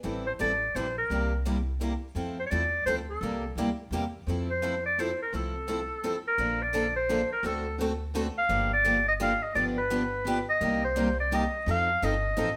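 A moderate studio reverb gives this short cut from a longer piece of acoustic string swing a roomy, natural setting. It moves at a lively 170 BPM in 3/4 with a playful swung feel, starting in F major and shifting to Bb major at 6.4 s. A clear clarinet carries the solo melody from 0.3 s, sitting up front yet sounding distant, with vibrato and scooped notes in a jazz style. Two picked steel-string acoustic guitars share the accompaniment, one bright and boxy with audible finger squeak, the other dark and full-bodied, the dark one sitting lower in level. Underneath, a pizzicato upright bass on gut strings gives a woody, thumpy low end, while the harmony moves through chords such as Fmaj7, Bbmaj7, Gm7 and F7.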